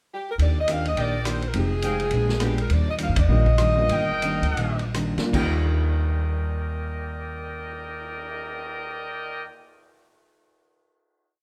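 Set in a roomy studio reverb, this brief, joyful big band swing piece has a tight, bright saxophone section carrying a harmonised call-phrase melody over the brilliant trumpet section's syncopated stabs, a woody pizzicato upright bass in a two-feel, rootless comping from a warm upright piano, clean four-to-the-bar strumming on a hollow-body archtop guitar, and a vintage drum kit with dark cymbals and a punchy kick, all slowing from 2.7 seconds through a band accent at 3.1 seconds before settling onto a held final chord at 5.3 seconds.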